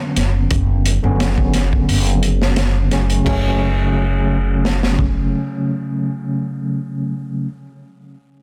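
A dense, heavily limited modern mix sits in a small room ambience, with every part placed up front. This is a short, hypnotic and cinematic cut of trip hop in F# minor, moving at 87 BPM in 4/4 with a light swing on the sixteenths. A clean tine electric piano, heard through its built-in speakers and colored by tremolo and tape echo, carries the accompaniment from the start and rings on until 7.5 seconds. An acoustic upright bass, played pizzicato on steel strings, holds a low F# with a woody, growly bite, while a crunchy breakbeat kit of kick, snare, hi-hat and crash sounds saturated and gritty, with a punchy kick, dark cymbals and a rolled-off top. Both bass and drums enter at 0.2 seconds and drop away shortly after 5 seconds. The harmony rests on Bmadd9 over an F# bass before settling onto F# minor at 3.3 seconds.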